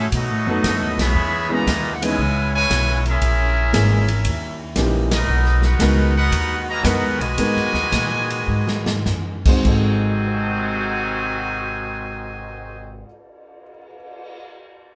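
A lilting swung 4/4 carries this sultry big band swing excerpt, where a bright trumpet section leads the melody over a nasal, straight-muted trombone section's second line and the background pads of a clear trombone section, while a woody pizzicato upright bass, an airy drum kit with a punchy kick and a warm baby grand piano fill out the room-reverberant live sound, with band accents at 0.9 and 5.0 seconds and a drum fill at 8.5 seconds as the tempo slows.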